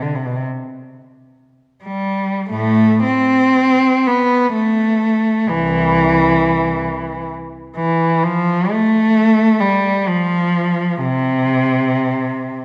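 Classical solo piece for unaccompanied cello in A minor, lyrical and nostalgic in mood, cut from a longer work. The tempo is free and expressive, moving in a slow, rubato 6/8 that sits roughly between 24 and 45 beats per minute counted in dotted quarters. A single bowed cello plays throughout the 12.6 seconds, placed up front, with a rich, smooth tone, even phrasing and a singing vibrato, ranging from C2 up to C4. A brief opening phrase gives way at 2.5 seconds to a contrasting second section that carries on to the close. The sound is framed by a moderate, hall-like reverberation that lends the solo line a sense of space and lingering resonance.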